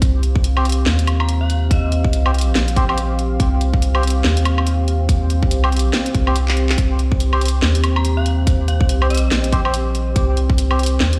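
A round, soft sub bass sits up front in this cavernous, meditative fragment of deep dubstep, sustaining in a swung half-time feel beneath a tight electronic kick, a garage kit of cracking snare, hats, handclaps and woodblock with a fill at 6.5 s, a moody detuned analog pad with chorus, reedy melodica stabs trailing dub echo, and an eerie, inharmonic synth bell whose chorused, tremolo-laden phrases appear at 1.2 s and 8.0 s, all heard through a big sound system in a bare room with large studio reverb.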